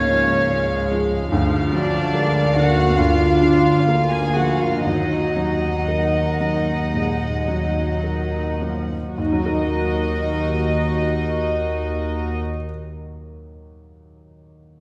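A muted, intimate upright piano accompanies this sorrowful, moving cinematic passage in Eb minor at a rubato 52-74 BPM that slows through the first 9.2 seconds. Above it float a violin section melody, a second line shared by pure, straight-toned flute and violins, rich viola section accompaniment, and cello and dark double bass sections on the bass. The strings are all bowed sul tasto with soft attacks, and everything is heard from further back in a reverberant concert hall. The strings and flute stop near 12.4 seconds, and the piano plays alone to 14.8 seconds in this fragment cut from a longer piece.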